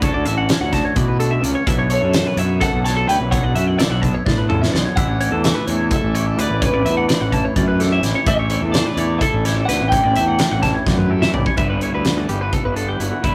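In a straight 7/8 at 254 BPM, this intricate, wistful math rock and midwest emo excerpt puts a loose indie drum kit with a fat snare, punchy kick and occasional fills up front beside a round, fuzz-driven fingered bass, while two bright, twangy, clean twelve-string electrics spread a tremolo-tinged accompaniment and background arpeggios over Dmaj9, Bm11 and A9sus4 harmony, a slightly broken-up, lo-fi guitar through a small old amp carries the melody until 11.0 seconds, and a double-tracked, crunchy overdriven riff slips in behind at 11.6 seconds as the chord moves to G6, all captured in a rough, tube-saturated rehearsal-room sound.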